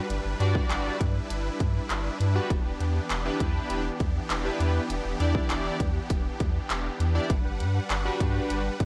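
An overdriven house drum kit with a punchy kick, claps and hi-hat sits up front in this euphoric, upbeat dance-pop excerpt, joined by a deep, round analog bass and a fat, detuned polysynth, both pumping with sidechain, over huge, lush supersaw chords moving from Gmaj7 to Em7, while a barely audible downlifter ends by 2.5 seconds and the whole mix carries the warbling pitch drift of worn cassette tape.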